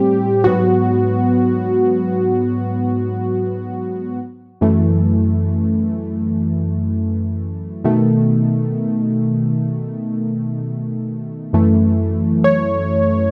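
Moody and sensual, this slow R&B excerpt at 65 BPM in F# dorian features a single analog keys part playing alone, its round, detuned sawtooth tone colored by chorus and a filter sweep, with fast attacks that decay into a mellow haze. Sitting up front in light reverb, the keys move through G#m7, F#m7, B7 and back to F#m7 across the 13.3-second passage.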